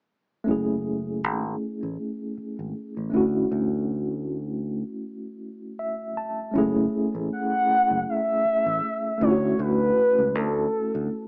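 R&B and neo-soul at a sultry, soulful 79 BPM with a gentle swing, this short clip from a longer piece opens with a worn, slightly out-of-tune tine electric piano through a combo amp with medium tremolo and a growly, amped fingered electric bass moving between F#m9 and Dmaj9, the piano adding a fill at 5.4 seconds before a smooth, gliding sawtooth lead with chorus, vibrato and slapback echo enters at 7.3 seconds, all in a rough home-demo mix with light reverb and a small-speaker sound.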